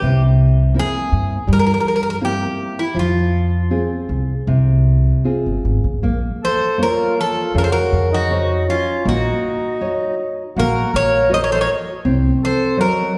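Heard from further back in a wet recital hall, this passionate, longing fado-style ballad excerpt moves at a rubato 80 BPM in F harmonic minor, where an up-front metallic, double-strung Greek bouzouki picks the melody over fingerpicked nylon-string guitar with audible finger squeak and a woody pizzicato upright bass, until the music shifts to Bb harmonic minor at 6.0 s and a reedy, smooth accordion enters at 6.4 s with a second line.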